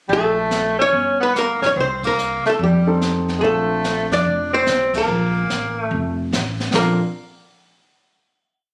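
Captured on a phone in a studio room, this short, complete piece has a compressed sound with moderate reverb and audible ambience. It is a relaxed, sophisticated small-group swing and bop number in B-flat major at 145 BPM, swinging in 4/4. A dark, clean hollow-body archtop guitar carries a compressed, picked melody built from motif-based phrases, while the tenor saxophone plays a second line beneath it with vibrato, soft attacks, scooped notes and octave doubling. The upright bass, woody and thumpy on gut strings, sits up front in a two-feel, and the brush kit sweeps a high-tuned snare over dark cymbals and a boomy kick. The grand piano drops in with syncopated, rootless comping from 2.9 to 4.1 seconds and returns at 6.7 seconds for the final chord, with the full band hitting an accent at 2.0 seconds along the way.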